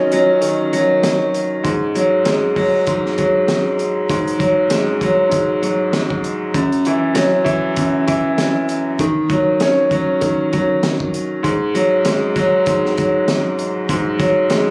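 Captured on a phone in the room, the sound is fairly dry with a light club ambience, as this reflective, gritty boom-bap hip-hop excerpt moves at 98 BPM in 4/4 with a 60% swing on the sixteenths. A clear, open grand piano sits up front for the whole stretch, its long sustain run through cassette-tape colouring and high- and low-pass filtering as it carries the accompaniment from D#m9 through F#sus2/G#, Esus2/F#, D#m7 and back to F#sus2/G#. During the opening break, a very quiet, hollow, flute-like pad holds mellow, detuned chords with a slow attack and chorus, then drops out at 1.6 seconds. A crunchy breakbeat kit comes in at 0.1 seconds and keeps going to the end: a punchy kick, a high-tuned snare and hi-hat, all saturated and dark, with a rolled-off top and a small-room feel. The result is a dusty, head-nodding groove where the clear piano stands out over the gritty, warm drums.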